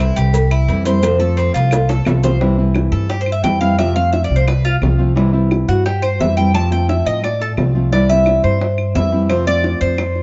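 A dark, lightly reverberant mix opens on a relaxed, danceable Cuban son and guajira groove at 174 BPM in C major, where a thumpy, woody upright bass sits up front alongside a bright, metallic tres, a fingerpicked nylon-string guitar with audible finger squeak plays a steady C-to-F vamp, round low-tuned cowbell and bongos and dry background claves keep the pulse, and grainy maracas drop out after a short drum fill that ends at 2.4 seconds, when the tres takes a solo of picked, double-strung arpeggios.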